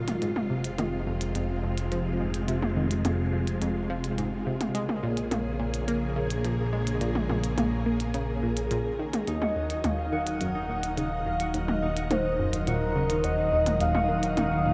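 A swirling, vintage string machine anchors this cosmic, hypnotic stretch of sequencer-driven space music. Its bright, up-front sustained chords are colored by ensemble chorus and phaser. Beneath it, a nasal, detuned analog pluck riff with a noise layer decays through chorus, phaser and analog delay, while a fat, thick sawtooth bass holds the low end. A minimal electronic kit adds clicky hi-hats and toms, its hits echoed by analog delay. The harmony moves from Fm to Bbm7 and settles on Ebmadd9 at 9.3 seconds, where a round, warbling horn-like lead enters with vibrato and lush chorus, joined by a mellow, ringing concert harp playing fingerpicked arpeggios. A moderate shimmer reverb with a long tail gives the whole a spacious, drifting atmosphere in this excerpt cut from a longer piece.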